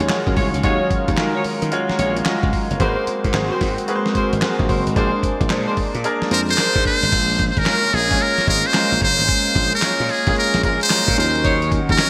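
New jack swing R&B at 111 BPM with a swung sixteenth-note feel, slick and confident, this excerpt moves through Ebm11, Ab9 and Bb9 before shifting to Bbm7 and Ebm7. A gritty, thumpy sampler-style drum kit with kick, snare, handclaps, hi-hat, crash and gated reverb sits up front beside a punchy, glassy slap bass. Meanwhile, a clear grand piano with lush chorus and audible action noise plays accompaniment over a swirling, detuned analog pad with phaser in the background. Tight jazz-style horn stabs punctuate the opening until 6.5 seconds and return briefly near the end. From 6.3 seconds a buzzy, close-miked trumpet with metal mute carries the melody, using scooped notes and light vibrato, set in a bright 1980s-style digital production with hall reverb.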